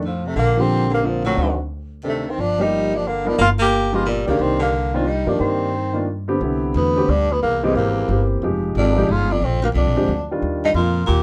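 A clear, close-miked baritone saxophone and a woody, thumpy pizzicato upright bass open this moody, late-night jazz waltz with a swung feel, joined almost at once by a breathy tenor saxophone carrying the mellow, scooped melody with light vibrato from a distant, roomy vantage. From 0.6 seconds a polished upright piano with long sustain fills in the harmony, moving through chords such as Bb69, D7b9 and Cm9 before the second section turns to Cmaj9, Fm9 and Bb13. The group sits in a moderate club reverb, and the excerpt, cut from a longer piece, ends at 11.2 seconds.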